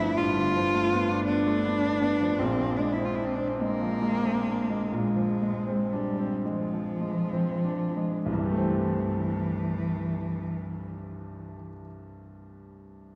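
Luminous and pastoral, this short excerpt of an impressionist classical duo for cello and grand piano moves in 12/8 with a free, rubato feel. A single bowed cello carries the melody, recorded close and up front, with a warm tone, soft attack, expressive vibrato and gliding portamento. Beneath it, the grand piano plays a bright, brilliant accompaniment with a natural sound, reaching down into the deep bass register. The harmony drifts from G9 to Bb9 and the pace slows until a new passage begins at 8.3 s on a C6 chord. The cello falls silent at 11.5 s, and the piano rings on alone until 13.2 s, all set in a dark, warm production with a lush concert hall reverb.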